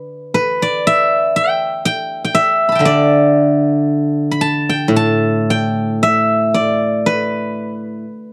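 A close, dry studio sound in a 1970s style, touched with light reverb, frames this short cut from a longer piece of traditional Chinese solo plucked-string music. A steel-string zither, played with fingerpicks and placed up front, plays alone from 0.0 to 8.3 seconds, its silvery, ringing tone spanning A2 to B5. The mood is flowing and pastoral, moving at a slow 58 BPM in 2/4 with uneven, rubato beats.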